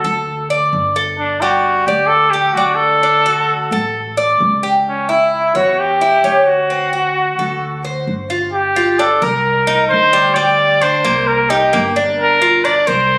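A straight 4/4 pulse at 131 BPM drives this sultry clip of Cuban son and guajira, cut from a longer piece. A breathy trumpet carries the melody up front, its soft attack, vibrato and whispered, vintage tone made intimate by tape echo. Beside it, a picked Cuban tres plays arpeggios on metallic double strings, some doubled at the octave, while a pizzicato upright bass adds woody, thumpy low notes sitting well down in the mix. The harmony rests on D, moving through Dmaj9 and D7 before settling into G minor at 8.5 s, where Gm7, Cm7 and D7sus4 turn over. Heard as if captured on a phone in the room, the sound has a club-like large studio reverb of moderate length, with the trumpet and tres feeling warm and close.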